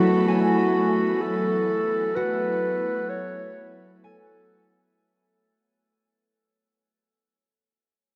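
This short ambient fragment opens with everything at once: a dark clarinet carrying the melody up front, an airy, breathy pad holding sustained chords with chorus, fingerpicked concert harp arpeggios, and a lush bowed violin section sitting in the background. The tempo is a slow 64 BPM in straight 4/4, and the mood is reflective and melancholic, resting on a B7 chord with the third omitted. The clarinet, in a classical solo style, stays between F#4 and C#5 and carries tape echo, as does the ringing acoustic harp, which spans E3 to G#5. The violins add expressive vibrato and fade out across the first 5.0 seconds, while the pad's slow attack and long release give it a soft, detuned glow. The clarinet stops at 4.9 seconds and the harp continues alone until 7.1 seconds, all bathed in a huge, wet reverb within a dark production, cut from a longer piece.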